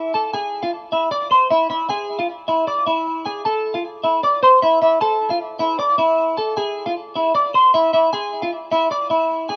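A clean, picked electric guitar sits up front, playing alone for the full 9.6 seconds of this brooding, dark hip hop fragment cut from a longer piece, moving over E7, A5 and back to E7 in a half-time feel. Its warm tone is colored by analog chorus, a low-pass filter and delay, which soften its upper reach across a range spanning E4 to D6. Light reverb and digital ambience surround it in a rough home-demo mix.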